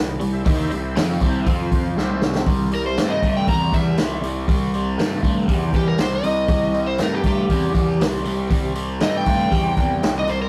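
A rough rehearsal-room recording with saturated grit and moderate reverb carries a driving blues rock power trio and southern rock groove at 119 BPM in C mixolydian: a bright, double-tracked overdriven electric guitar riff with phaser rides over round fuzz bass and a punchy vintage drum kit, a thick tonewheel organ with slow rotary speaker holds chords in the background until 2.4 s, and after a drum fill an up-front slide guitar played with fingerpicks enters at 2.7 s for a solo that runs to the end of this cut.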